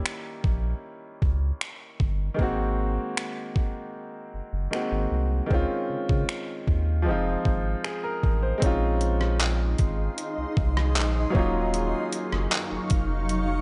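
A slow, straight 4/4 pulse at 77 BPM drives this contemporary R&B piece in Bb minor. It comes from a detuned 8-bit drum machine whose overdriven, thumpy kick sits up front with rim clicks, hi-hat, handclaps and finger snaps, carrying a roomy, sampler-style grit. A round sine sub bass, deep and quick to speak, underpins it, while a clear, natural concert grand piano carries the chords from Eb7b9 through Ab7, Dbmaj9 and Fm7. The mood is longing and sensual, and the mix stays dry with the highest frequencies trimmed. At 8.6 seconds the harmony moves to Bbm11 and Ebm9, and at 9.7 seconds a cloudy granular pad drifts in, blurred and mellow, with a slow attack, its own reverb and a sidechain pump. The piano adds a brief fill at 13.3 seconds as the recording is cut off.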